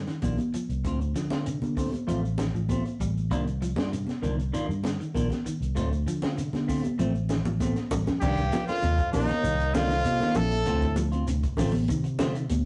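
A rough rehearsal-room recording with a wet studio reverb and a dulled top end frames this short, funky, driving afrobeat cut at 98 BPM in C dorian, moving between Cm11 and Dm7. A round, amped fingered electric bass sits up front, joined by a compact cocktail drum kit with a punchy kick, a high-tuned snare and a dark, rolled-off top. Ringing, high-tuned congas struck with hard hands and a grainy, mellow shekere add close, dry percussion. Two semi-hollow electric guitars share the groove: one plays clean, picked arpeggios in the background, while the other adds clean, fingered stabs coloured by a phaser. After a drum fill from 7.4 s, a bright trumpet carries the melody from 8.2 s to 11.0 s with light vibrato and scooped notes, shadowed by a veiled, cup-muted trombone section playing a distant second line.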